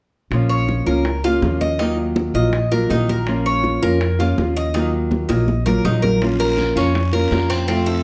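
A straight, danceable 4/4 Cuban son and guajira groove drives this sultry Latin fragment, cut from a longer piece: a woody, thumpy pizzicato upright bass and a small, fingerpicked nylon-string guitar sit up front beside the metallic, double-strung Cuban tres picking arpeggios, while ringing, high-tuned congas and round, saturated, low-tuned bongos stay in the background, a drum fill arrives at 5.1 seconds, and a raspy, distant guiro joins at 6.2 seconds, all within a moderate large-studio reverb.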